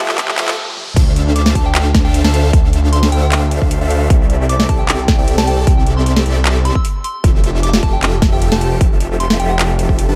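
A dark, digitally ambient production frames this lush, euphoric future bass excerpt at 153 BPM in half-time: a background riser, a round, echoing pluck and a fingerpicked, ringing Celtic harp open over a G7 alongside huge, bright supersaw chords with phaser, an overdriven punchy kick up front and a trap kit with woody snare and metallic hats. A brief stop then gives way to the drop at 1.0 s, which brings a thick detuned saw bass and, from 1.4 s, a pure FM synth bell melody, with the chords, bass and bell pumping under sidechain.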